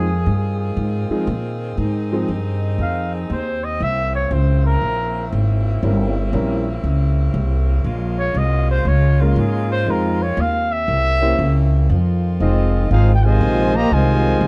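Big band swing in F minor at 119 BPM, this brassy, swinging excerpt opens with a breathy, scooped-note trumpet solo up front over a growly pizzicato upright bass, clear grand piano comping and loose, bright saxophone chords, before a tight, clear trumpet section and a mellow trombone section enter at 12.4 seconds in a dry, close 1970s-style studio sound.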